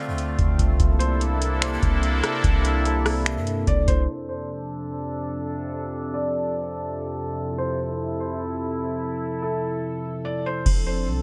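An evolving sawtooth pad with sidechain pumping, a soft, muted felt piano melody carrying lush chorus and digital delay, and a round, dark 808-style bass open this dreamy, blissful cloud-rap fragment in F major at 146 BPM in a half-time 4/4 feel. They are joined moments later by a booming analog drum machine of deep kick, metallic hats, snaps, rim clicks and crash with gritty 12-bit character. The harmony moves from Dm7 through C13, and bass and drums drop out at 4.1 seconds as the music settles on F6 under a filter sweep. They return briefly at 10.7 seconds, with the hi-hats muted, in a bright 1980s-style digital sound with light reverb.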